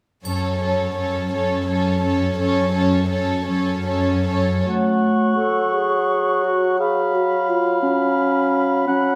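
In a rubato 6/8 metre, this solemn, yearning slow romantic orchestral movement opens with bowed strings played sul tasto: a pure, floating violin melody over a second violin line, dark violas and up-front cellos with light vibrato, touched by a dry triangle in the background. At 4.7 seconds the woodwinds take over, with a present clarinet, a distant, roomy cor anglais and an airy silver flute carrying second lines above a mellow bassoon, set in a moderate stage reverb.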